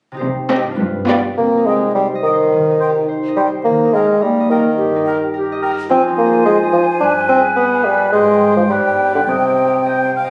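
Caught on a phone in a wet stone room and compressed with club reverb, this excerpt from a longer playful, whimsical film cue in C minor moves at 106 BPM in a straight 2/4, with a quirky, sneaky mood. A ringing concert harp plays arpeggios from start to finish, while lush bowed strings sound only until 1.3 s: symphonic violins on the melody, distant studio violins on a second line, smooth chamber violas, and up-front cellos on the bass. A mellow, up-front bassoon enters at 1.1 s and carries on with a dark solo clarinet, an airy flute ensemble with crisp attack, and a roomy, distant oboe, as the chords move from Cm through Eb and Fm7 to G7b9 and Abmaj7 before returning to Cm.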